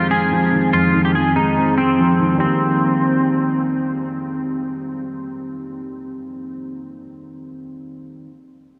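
A half-time feel in 4/4 gives this hip hop and trap fragment, cut from a longer piece, a heavy, unhurried pulse with a hard-hitting yet eerie mood. A twangy, clean electric guitar carries the melody up front, its fingered, compressed tone colored by analog chorus, a low-pass filter and tape echo, before it stops at 3.6 seconds. Beneath it, a dark grand piano plays the accompaniment in a low register, mellow and smooth with a vintage character and long sustain, continuing until 8.3 seconds. A filter sweep runs through the opening 2.4 seconds, after which the harmony moves from Fm7 to Cm7 as the second section begins. The whole mix is dreamy and soaked in a huge ambient reverb with a very long tail, leaving the sound hazy and spacious.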